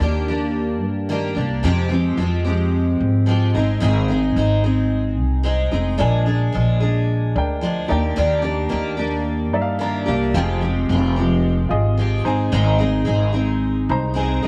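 A moderate spring reverb gives this short acoustic pop fragment, cut from a longer piece, a gentle sense of space around its heartfelt, sunny mood in a straight 4/4 feel. Up front, a bright, full-bodied jumbo steel-string acoustic guitar is picked and double-tracked, carrying the accompaniment from the start. Beside it, a pizzicato upright bass sounds growly and woody, holding down the low end throughout. At 6.0 seconds an intimate upright piano joins, softer in the mix, its natural tone carrying audible action noise, and it adds short fills at 9.5 seconds and again near the close. The harmony cycles through Ebmaj7, Fmadd9, Ab and Bb7, lending the passage an open, hopeful glow.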